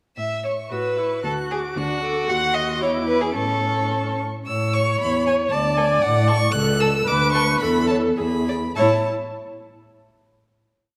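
A short, spirited and graceful classical-period movement for string quartet in A major opens at 0.2 seconds with the first violin's expressive, high, vibrato-laden melody, with gliding portamento and a rocking two-note figure. Beneath it sit the rich, smooth second violin's after-beat and sustained chords and the close cello's pizzicato and sustained bass with passing notes. The warm viola joins at 0.7 seconds with a counter-melody and held chords, all in a quick, rubato 2/4 at 100-119 BPM. The opening phrase returns before the tempo slows into a final A major chord at 8.8 seconds, ringing in a reverberant recital hall.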